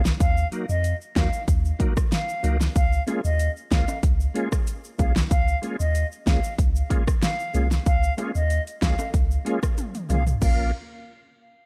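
A silver concert flute, a bright, reedy tonewheel organ and a deep, punchy sub bass with a pitch-drop attack open this bouncy, hypnotic dancehall excerpt at 94 BPM together. The flute carries a pure, softly attacked melody with vibrato, sitting in a narrow upper range and trailed by delay. Beneath it the organ's clean chords turn through a slow rotary speaker and chorus vibrato, with audible key click and a sidechain pumping that gives the accompaniment its breathing motion, moving from Ebm to Db6. The electronic pop drum kit sits up front with a punchy kick, fat snare, metallic hats, crash, rim click and toms, its layered sound roughened by overdrive, while a bright acoustic tube shaker and timbales add small-room detail low in the mix. A drum fill runs from 9.8 to 10.4 seconds, landing on a Bbm chord as the piece shifts into a new section, all wrapped in a dark, digital ambience.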